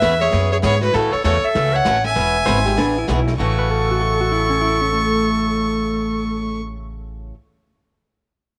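A swinging 4/4 at 196 BPM drives this playful western swing excerpt in A major, with a pizzicato upright bass, thumpy and woody on gut strings, sitting up front, while a boxy, bright picked acoustic guitar supplies the accompaniment and a dark vintage brush kit stays in the background until 3.6 seconds. A clear, smooth fiddle with light vibrato carries the melody up front, joined by a breathy clarinet second line with scooped notes, and from 2.5 seconds a twangy pedal steel guitar adds its own second line with volume swells and slide. The group sits in a moderate echo chamber reverb with small room ambience, and the bass and guitar ring on to 7.3 seconds.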